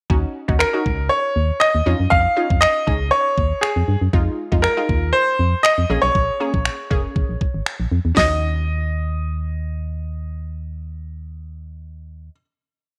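A light reverb gives this short dance-pop piece a gentle sense of space, and its mood is driving and confident in a straight four. The smooth R&B drum kit is electronic and up front, with a knocking kick, fat snare, metallic hats and finger snaps playing a syncopated pop beat that has a tape-softened edge until it stops at 8.3 seconds. Underneath, an organ-like FM bass sounds hollow and dark, its fast-attack, decaying notes forming a syncopated line with chromatic approach notes and pumping with sidechain. An analog pluck built from detuned sawtooth and pulse waves adds round, syncopated close-voiced chords under a filter sweep, colored by chorus and phaser and also pumping with sidechain. From 0.6 seconds a brilliant, polished grand piano carries a motif-based melody of song-like phrases with short sustain and a slapback echo, and the piece closes on a final chord from 8.2 seconds, just as the drums drop out.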